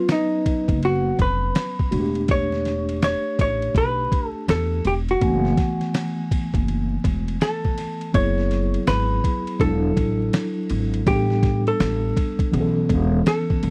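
A dry, close 1970s-style studio sound flecked with vinyl crackle frames this smoky, mellow jazz-hop excerpt at 82 BPM with a swung 16th feel, where a dark, picked hollow-body jazz guitar carries the melody over a clean tine electric piano heard through its built-in speakers, a gritty, pitched-down, tape-warm sampler-style drum kit with a thumpy kick, medium-tuned snare, hi-hat and ride, and a woody gut-string upright bass entering at 0.7 s, the harmony shifting to a chain of sus4 ninth chords at 8.1 s.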